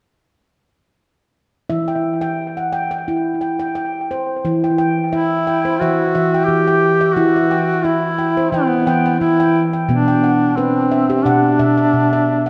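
Gentle and meditative, this world piece, cut from a longer work, unfolds in a straight, unhurried 4/4. A handpan opens at 1.7 seconds with ringing arpeggios struck by the fingertips, its nitrided steel tone sitting up front in a boxy small-room sound and trailed by analog delay. At 5.1 seconds a duduk enters with a folk-style melody, warm and soft in attack, shaped by vibrato and scooped notes, also placed up front and touched with analog delay. The harmony rests on E minor before moving to B minor at 9.9 seconds. A wet plate reverb and an echo-heavy mix give the whole passage a lingering, spacious glow.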